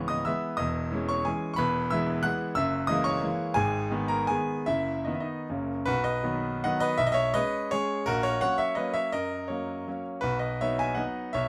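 A bright, brilliant grand piano plays alone and up front in this short passage from a longer romantic classical piece: a proud, rustic triple-time dance in B major with dotted rhythms, moving with free rubato between 140 and 195 BPM. The harmony passes through C#m7, E, F#9 and G#m before settling on F# and then B near 5.9 seconds, where a second section begins that returns home to B at 10.2 seconds. The piano spans C#1 to F#6 and sounds natural and detailed, captured by close microphones in a dry room with very little reverb.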